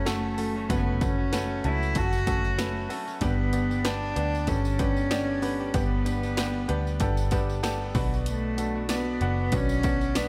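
A dry mix carries this dramatic, driving, piano-led pop excerpt in 4/4 with a light swing, moving through F#m, G and Bm. A rich, floating bowed cello sings the melody sul tasto, sounding distant yet up front, over a bright upright piano whose woody, slightly detuned tone and audible action noise give the accompaniment an intimate presence. Beneath it, a compressed clean electric guitar riff sits in the background, a dark, round, foam-muted picked bass anchors the low end, and a punchy, overdriven analog drum machine and a jingly tambourine enter at 0.1 seconds.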